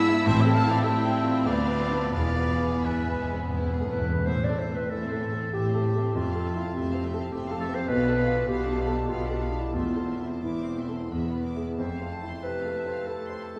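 Tragic and brooding, this classical excerpt in A minor moves in a rubato 3/4 at roughly 80-107 BPM, with a clear concert grand piano up front carrying the melody alongside a distant, expressive violin section and a lush viola section accompanying in the background. A smooth violin section and a mellow clarinet weave second lines throughout, while an airy wooden flute, a clear oboe and a dark, very quiet French horn section appear only in the opening seconds, as cellos and double basses supply a rich bowed bass from 0.3 s. Timpani with hard mallets enter at 0.3 s, add an articulate fill from 2.1 s and return briefly at 9.8 s, all set within a wet concert hall reverb.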